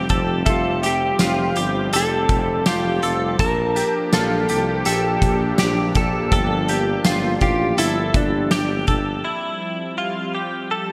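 A loose indie drum kit sets a straight 4/4 pulse at 82 BPM, its punchy kick, fat snare, hi-hat and tambourine sitting up front in a pumping studio room with gated reverb and a rolled-off top. This short cut of dream pop in F major feels blissful and floating, drifting through Fsus2, Bb6 and Gm7 before returning to Fsus2. A twangy, compressed clean electric guitar recorded direct plays bright picked arpeggios with analog chorus and delay, while a dark, fingered electric guitar carries the mellow melody through the same chorus and delay until 8.8 seconds. Underneath, a tuba plays the bass line with light vibrato and scooped notes, close-miked in a pop style. A detuned, warbling sawtooth pad with a slow attack holds sustained chords in the background, and a very quiet FM synth bell adds pure, decaying touches. The whole mix is bathed in a lush 2.7-second hall reverb with a glossy 1980s-style digital sheen, and after the drums stop at 9.0 seconds the pad and arpeggios ring on to 10.9 seconds.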